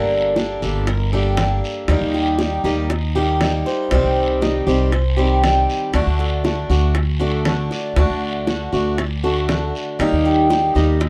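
Danceable and nostalgic, this excerpt of Cuban son and guajira moves at 118 BPM in a straight 4/4, with an up-front, boxy picked swing-style acoustic guitar and a woody, thumpy pizzicato upright bass on gut strings carrying a Gmadd9, Eb, Cm and D progression, while a metallic, double-strung Cuban tres weaves arpeggios, round, low-tuned bongos struck with hard hands and a raspy, distant guiro enter at 0.4 seconds, all captured in a dry, close 1970s-style studio sound with light reverb.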